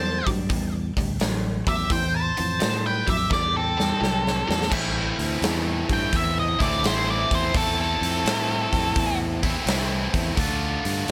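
A heavy, gritty blues rock and southern rock passage, cut from a longer piece, opens with a double-tracked, bright overdriven electric guitar riff up front and a growly, punchy fingered bass. Alongside them, a dark octave-fuzz lead guitar carries the melody while a nasal lead guitar with a parked wah plays a warm, overdriven second line. A huge arena drum kit enters at 0.3 s with a natural big-room sound, a medium-tuned snare, a punchy kick, hi-hat and crash cymbal. The swung groove moves from Am7 to Am and closes on Dm. A drum fill leads into a lead guitar solo at 4.7 s, where the wah guitar drops out and the fuzz lead carries on until 9.2 s. A light reverb gives the trio some air.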